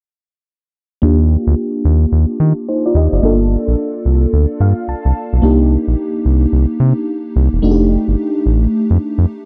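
Punchy and bouncy, this short R&B excerpt moves at 109 BPM with a 16th-note swing, stepping through Ebmaj7, Gm9, Cm7 and F13. A lush, dreamy FM electric piano with a soft pad layer carries the chords through chorus, tremolo and a filter sweep, adding a fill between 4.3 and 5.4 seconds, while a round, deep analog bass sits up front beneath it. The dark production is dressed in light digital reverb.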